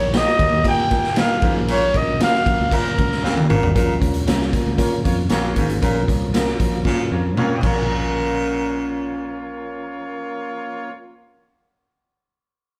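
Uptempo 1960s-style soul with a driving, urgent feel, cut from a longer piece, where a growling, breathy trumpet carries the melody until 3.5 s over a punchy, gritty garage drum kit, a round foam-muted bass, a boxy baby grand piano, lo-fi guitar stabs from a small old amp and a very quiet organ on a slow rotary speaker, while a raspy baritone saxophone riff enters at 1.2 s and a distant horn section adds a second line from 4.8 s, the band playing live in one room with a large studio reverb.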